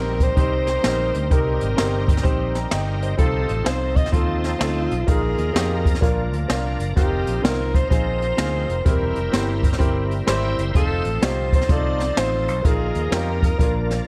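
Swung eighths in 4/4 drive this jubilant, soulful uptempo gospel excerpt, where a breathy, close-miked alto saxophone carries an intimate, whispered melody with vibrato and scooped notes over woody upright piano accompaniment, a bright, shouting tonewheel organ holding sustained chords through slow rotary speaker, light overdrive and chorus vibrato, a dark, round fingered electric bass, and an up-front brush kit with a punchy kick and high-tuned snare that enters at 0.2 seconds, all set in light reverb.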